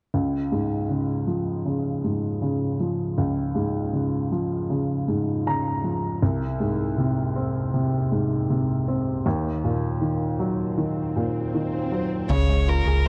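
Pop with a hopeful, tender mood, this short piece opens on a woody, up-front upright piano carrying the accompaniment through a Db, Ab/C and Ebm progression, with a piano fill around 5.1 seconds. An electronic swell rises from 11.1 seconds into an impact at 12.3 seconds, where a clear, focused violin with vibrato enters on the melody alongside a round, foam-muted vintage electric bass. The dark production sits in a lush hall reverb, and the piece is cut from a longer one.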